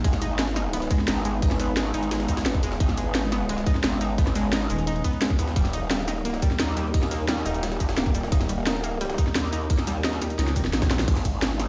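A stone-walled room with light digital ambience frames this excerpt of dark technical drum and bass, its top end dulled as if heard through a big sound system in a bare hall, and the mood is mechanical and grim. Up front, a tight electronic kick and a layered kit with a cracking snare, hi-hat, shaker and crash drive the drop, while a gritty, pitched-up jungle sampler-style kit with a high-tuned snare and ride sits far back in the room, tape-softened and thinned by filtering. A growling, wobbling bass, saturated through tube drive and bright with chorus, carries the low end throughout. A thick FM bass sounds at the very start, then bursts in briefly at 4.7 seconds and again from 10.4 seconds, where a drum fill closes the drop and a very quiet electronic zap flickers at 10.9 seconds. Above them, a punchy, lush unison pluck spins arpeggios through digital delay, and a deep, moody analog pad with a slow attack holds sustained chords in the background, both pumping against the kick as the harmony moves from G# minor to D#.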